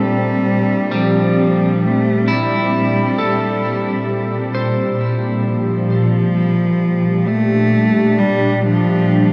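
A rich, smooth cello carries the melody up front with vibrato and a diffuse ambient delay in this melancholic, reflective ambient passage in a slow 3/4. Beneath it, a glassy, ethereal FM pad holds mellow chorused chords while a slightly broken-up, twangy electric guitar picks arpeggios through delay until 8.2 seconds, and a very quiet, nasal bowed-like drone hums until 5.6 seconds. At 5.5 seconds the harmony moves from Gm to Gm7 as a filter sweep passes over the pad, all set in a huge, wet reverb that makes this short cut from a longer piece feel vast.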